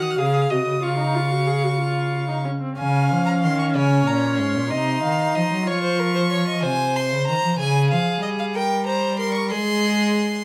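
Set in a straight 6/8 counted in dotted quarters, this baroque-style fugue for string quartet moves with a driving, solemn gait, cut from a longer piece. The first violin carries the high melody with a clear, even tone, light vibrato and a close presence. The second violin weaves a second line beneath it with a focused sound and vibrato. The viola, set distant, supplies expressive accompaniment with soft attacks and portamento until 6.6 s, while the up-front cello anchors the bass with a rich, vibrato-laden tone and its own gliding portamento. A moderate large-studio reverb surrounds the quartet as the harmony moves from Ab7 to Db, then shifts at 2.8 s into a second section colored by chords such as Bbm9 and Cmadd11 before settling on Ab.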